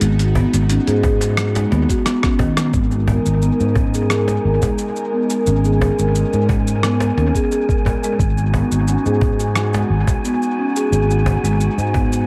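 A breathy, detuned pad holds sustained chords over a round, mellow marimba with soft mallets playing arpeggios through a low-pass filter and analog delay, while a growly, up-front fretless electric bass and a dusty, overdriven sampler-style kit of hi-hat, rim click and shaker open this meditative, mystical organic downtempo piece, cut from a longer work. It moves at 88 BPM in a straight 4/4, in G# minor with tuning at A4 = 439 Hz, with the pad and bass both carrying sidechain pumping and the pad adding chorus. A woody cajon played with soft hands comes in almost at once, trailed by dub echo, and a gritty, thumpy electronic kick joins at 1.0 seconds. After a drum fill, a filter sweep begins on the marimba at 2.7 seconds as the harmony shifts from B over G# to a bare G#5 chord and later returns to B over G#. A faint, wind-like tuned noise texture drifts in at 3.2 seconds, hovering high with its own built-in reverb. 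The echo-heavy mix sits in a moderate spring reverb, giving the drums a compressed, small-room grit against the airy sustained layers.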